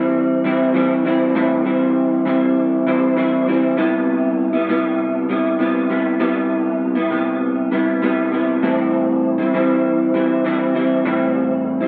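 A lone electric guitar, played through a small old amp, opens this short indie pop excerpt cut from a longer piece, sitting in C major at a relaxed 99 BPM in straight 4/4. Its picked tone is dark and slightly broken-up, with a lo-fi, compressed character that keeps it up front, while an ensemble chorus and a vibrato effect give the notes a shimmering wobble. The mood is sunny and laid-back, moving from a rootless Am7 into a Cmaj7 at 3.8 seconds and back to Am7 at 8.6 seconds. The guitar ranges from A2 up to E4 across the roughly 12 seconds it plays. A wet studio ambience surrounds it, and the rough home demo mix adds to its casual, intimate feel.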